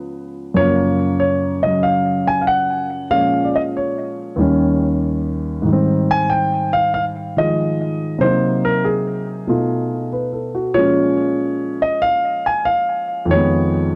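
Swung eighths at 94 BPM in 4/4 give this smoky, cool jazz fragment, cut from a longer piece in B-flat minor and tuned to A4 = 443 Hz, an unhurried lilt. A solo concert grand piano, up front with deep bass and short sustain, carries the whole 14 seconds. It moves from Db7 and Gbmaj7 through a Bbm7-Eb7-Abmaj7 turn and a darkening Cm7b5 to B7#11 passage, then returns to Bbm7 before settling on Fm7b5. Analog delay on the piano and a wet small-room reverb wrap the dark, warm production in a close, late-night haze.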